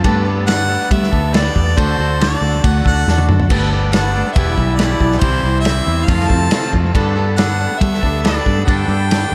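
An echo-heavy mix with light reverb frames this nostalgic, warm folk rock and heartland rock excerpt, where a dark, round, punchy fingered electric bass sits up front beside a loose indie drum kit with a tight kick and rolled-off top that plays a fill at 3.1 seconds. A picked steel-string acoustic guitar with fresh strings and tape echo stays in the background, while a clean, twangy electric guitar plays a riff through lush chorus, and a very quiet tonewheel organ holds lightly overdriven chords with key click through a slow rotary speaker. From 0.5 seconds a clear, distant harmonica carries the melody with vibrato, scooped notes and its own tape echo.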